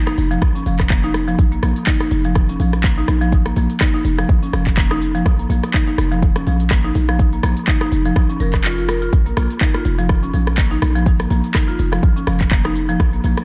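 This afro house excerpt moves at 124 BPM in 4/4 with a 56% swing on the sixteenths, sitting in B-flat minor on a Bb5 chord, tuned slightly sharp to A4 = 441 Hz, and the mood is earthy and warm. A buzzing marimba with medium hard mallets carries the arpeggios from F3 to Bb4, its woody, bright hardwood-bar tone placed up front, pumped by sidechain and trailed by dub echo. Beneath it, a deep, boomy 808-style bass with a sine core, a noise layer and a fast, decaying attack holds the low end between F1 and Bb1, thickened by tube saturation and shaped by sidechain pumping. The electronic kick is layered and sits forward in the mix with studio reverb, while an afro-pop kit of cabasa, handclaps, rim click and crisp hi-hats fills in the groove with its own touch of studio reverb. The kick drops out briefly from 8.6 to 9.1 seconds before returning. The overall sound is echo-heavy with light reverb and a digital ambience, its top end rolled off above 11.0 kHz.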